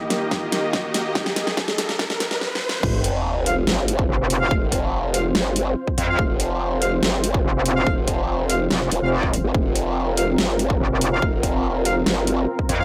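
Light reverb and a digital ambience frame this aggressive, menacing excerpt of heavy wobble dubstep at 143 BPM in a half-time feel, opening on a lush, detuned supersaw pad with sidechain pumping and a riser and sub drop over a drum fill and filter sweep. The drop lands at 2.8 seconds with an impact, as a saturated, formant-filtered growl bass pushes up front against a punchy, tape-tinged electronic kick and a dubstep kit of huge snare, crash and metallic hats. Bright brass stabs with light vibrato and dub echo follow, and from 4.1 seconds a clangorous FM wobble bass with chorus and overdrive takes the loudest place in the mix.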